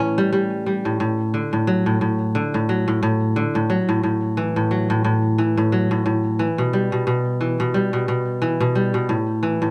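A solo kora, fingerpicked with crisp, ringing tone and set up front, carries this wistful, autumnal folktronica excerpt in a lightly swung 4/4, moving from A7 through F#m7 and Em to A5 in a small room with dark, warm production.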